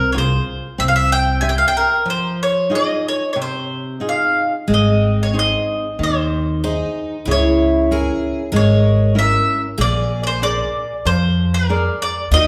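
A fado-style ballad in F minor, longing and mournful, moves at a rubato 94 BPM in 4/4 before shifting to Ab major at 4.7 s, with a break from 2.1 to 4.7 s. An up-front mandolin carries the melody in bright, woody double strings over a fingerpicked flamenco guitar with audible finger squeak and a growly pizzicato upright bass on steel strings, while a shimmering, octave-doubled twelve-string acoustic guitar joins as a second line at 4.7 s. The parts sit in the generous reverb of a church or concert hall, and the passage is cut from a longer piece.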